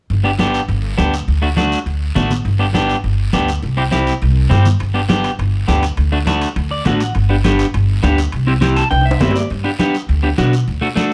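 A straight cumbia groove in 4/4 drives this festive, danceable latin snippet, with bright, hard-hand congas and a raspy, vintage guiro beneath a woody, thumpy pizzicato upright bass on gut strings and an up-front, slightly broken-up picked electric guitar, while ringing metal-shell timbales join at 4.8 s, clean electric guitar fills slip in around 6.6 s, and a drum fill at 8.9 s sets up a brief closing section, heard through close, detailed microphones with light reverb.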